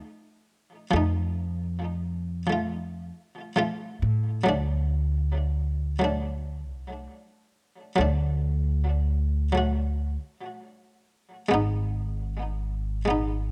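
Trip hop at a slow 68 BPM in 4/4 with a light sixteenth-note swing, this brooding, melancholic excerpt is cut from a longer piece and tuned slightly below standard pitch. A buff-stop harpsichord opens alone as accompaniment, its muted, lute-like plucks sitting mid-forward and up front, coloured by tremolo, tape echo and a gritty vintage 12-bit sampler texture. An upright bass joins at 0.9 s, played pizzicato on steel strings with a woody, acoustic tone that stays close and present in the low register. The harmony moves from F7 to D at 4.5 s and settles on Abm at 11.5 s, deepening the brooding, melancholic mood. Light reverb and a small room ambience frame the pair intimately through to the end at 13.5 s.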